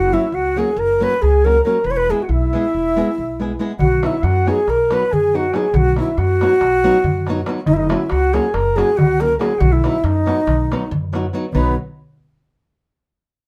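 A studio sound with moderate reverb frames this exuberant, virtuosic Balkan wedding-band piece in 9/8, moving at a straight 279 eighth-note beats per minute in B major and cut from a longer performance. An airy, softly attacked, close-miked alto flute sits up front and carries the slightly unsteady melody while a smooth, classical-style clarinet sings a quieter second line above it, over a woody, dark pizzicato upright bass and a fingerpicked flamenco guitar. A crisp, small metal-shell darbuka played with soft hands joins at 3.8 seconds as the chords turn from F# and E to B.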